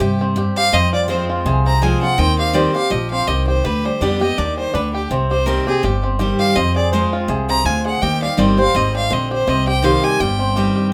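A swung 165 BPM pulse in 4/4 drives this haunting, lonesome bluegrass excerpt in C minor, cut from a longer piece and moving through Fm, Eb6 and G/D before settling back on Cm. A clear, up-front fiddle carries the melody with light vibrato over a bright, full-bodied picked acoustic guitar with audible finger squeak, while a mellow, twangy banjo played with fingerpicks adds percussive arpeggios. A growly, thumpy pizzicato upright bass anchors the low end, and all four play together from the start through nearly the whole 10.9 seconds in a moderate studio reverb.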